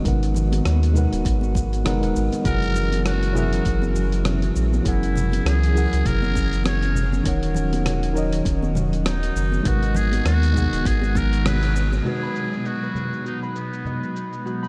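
Soaked in a dreamy, heavily reverberant haze, this relaxed sunset chillout fragment in G# minor drifts at 100 BPM with a swung sixteenth feel, as a worn, slightly out-of-tune tine electric piano with sampler grit and tape echo and an airy, breathy chorused pad lay down G#m9 and F#9 chords over a round, up-front sub bass, a gritty, overdriven sampler-style drum kit with shaker and rim click, a deep electronic kick and very quiet, high-tuned congas, while a buzzy, raspy muted trumpet takes the solo melody from 2.5 seconds, the band hits an accent at 11.5 seconds, and at 12.1 seconds a bright thumb-plucked harp begins ringing arpeggios as a filter sweeps across an analog synth pad.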